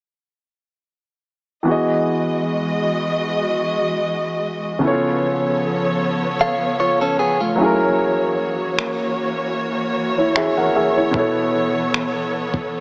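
Contemporary R&B with a romantic, smooth mood, heard as a fragment cut from a longer piece. An intimate grand piano opens at 1.6 seconds, close and natural with its action noise audible. A bowed string ensemble soon joins it, sustaining soft-attack chords with vibrato and expressive portamento over a progression that moves from Emaj9 through C#7b13 and F#7 to B9sus4. A bright, clean electric guitar, picked and recorded direct, adds a brief arpeggiated figure with digital delay at 6.4 seconds. From 8.8 seconds a dusty, sampler-style kit brings finger snaps and a thumpy, gritty, overdriven kick, quieter than the other parts. Light reverb and a small-speaker tone give the whole mix a compact character.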